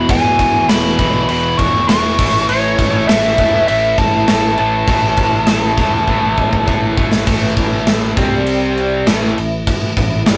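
Swaggering and energetic, this hard rock excerpt moves in a straight 4/4 with a rough rehearsal-room feel and saturated grit. A biting, overdriven lead guitar carries the melody in a high register, playing only until 6.9 seconds. Beneath it, a cranked stack guitar, double-tracked and up front, drives a bright, picked riff, while a fingered electric bass adds a dark, round, amped low end. A gated 80s drum kit enters at 0.1 seconds with a punchy kick, medium-tuned snare and glittering crash cymbals in a stone-room sound, and a drum fill from 6.1 to 7.3 seconds leads into a new section. In the background, a smooth, detuned sawtooth pad with chorus holds mellow sustained chords beneath the harmony as it shifts from E through A5 and C5 before returning to A5.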